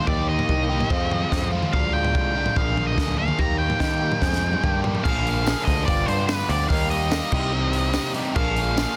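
A dark, fuzzed-out lead guitar carries the melody over a biting, double-tracked overdriven guitar riff sitting up front, opening a moody, restless indie rock passage at 145 BPM in a straight 4/4, cut from a longer piece. A growly, punchy picked bass and a dry, compact cocktail kit with dark cymbals, a high-tuned snare with soft clipping and a punchy kick drive the harmony through Eb, Fm7 and Ddim, with a drum fill at 4.2 seconds leading into a section built on Bb7 and G7. From 5.5 seconds a very quiet, jingly, saturated tambourine joins, all inside a dense, heavily limited modern master.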